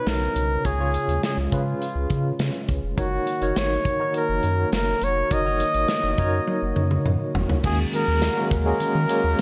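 A steady, straight 4/4 pulse at 103 BPM drives this nostalgic, moody 1980s-style pop excerpt. The modern studio drum kit sits up front with a punchy kick, a medium-tuned snare, hi-hat, tambourine, toms and crash cymbal, all bathed in gated reverb, and a drum fill from 6.5 to 7.6 seconds leads into the next section. Beneath it, a round, deep analog bass with a nasal, dark edge anchors the harmony as it moves from Badd9 to Db to Gb6. A barky tine electric piano with medium tremolo plays the accompaniment through a combo amp, while a smooth, mellow analog pad with chorus holds sustained chords in the background. Up front, a warm flugelhorn carries the melody with light vibrato and delay. At 7.6 seconds the harmony settles on Gbadd9 as a very quiet, double-tracked fuzz guitar enters, all within a light reverb.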